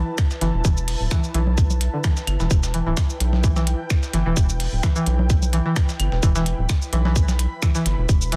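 Minimal techno at 129 BPM in E minor, this short clip from a longer piece has a clinical, quirky mood, with a light swing on the sixteenths and a single E minor chord held throughout. A rubbery, hollow square-wave bass sits up front from the start, bouncy and dark, pumping against the sidechain alongside an ethereal, airy pad whose detuned unison voices are softened by ensemble chorus and built-in reverb. At 0.2 seconds a tight, layered electronic kick drum lands prominently, joined by a minimal click kit of finger snaps, clicky hi-hats and shaker, plus a gritty, sampler-style soul kit of hi-hat and snare that stays in the background with high-pass filtering and pumping hats. From 0.4 seconds a twangy, nasal resonator pluck carries the riff, its bright, string-like tone colored by chorus, cassette tape character and digital delay. Congas and claves with delay drift in at 1.5 seconds, tape-warm and set back in the mix, while the overall sound is dry, dense and heavily limited in a modern style.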